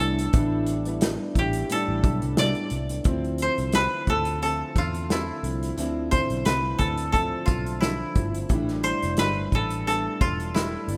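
A gently swung sixteenth-note feel from a loose, punchy indie drum kit with a pumping small-room sound underpins this lonely, mellow bedroom-pop excerpt, where a dry, woody koto carries the melody up front with subtle chorus and tape echo over a fingerpicked jumbo steel-string guitar drenched in lush chorus and warbly pitch drift, very quiet round synth keys, and a dark, foam-muted vintage electric bass, as the harmony shifts from A7sus4 to Dm9 at 3.1 seconds and back at 8.5 seconds in a rough home-demo mix with light reverb.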